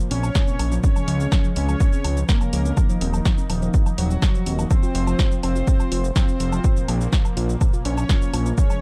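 A dry, punchy electronic kick sits up front in this melancholic, driving melodic techno fragment at 124 BPM, with a fat, detuned sawtooth bass carrying tube saturation and sidechain pumping, a dry analog drum machine of hi-hat, shaker, punchy snare and woodblock, a woody wave-folded pluck playing arpeggios in the background, brassy pad stabs, a bold unison lead melody with vibrato, and a reedy, gut-toned studio violin section on a second line, all over a Bbm, Db, Ebm, F5 progression in a dark production with little reverb, where dub echo trails the pluck, pad, lead and violins.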